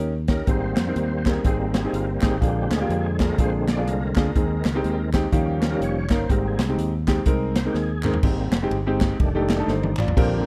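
A gritty, overdriven tonewheel organ with fast rotary speaker and chorus vibrato takes the lead for the first 8.2 seconds of this uplifting, soulful uptempo gospel excerpt, swinging at 124 BPM in Ab major over chords moving from Abmaj7 through Bb7 and Eb7 to F13. A clear, up-front concert grand piano with short sustain and a warm fingered electric bass carry the accompaniment, while an airy big-band drum kit with a punchy kick and medium-tuned snare drives the swing, adding fills before and after the change to a new section at 8.2 seconds. Crisp group handclaps sit distant in the background of this dry, close 1970s-style studio sound.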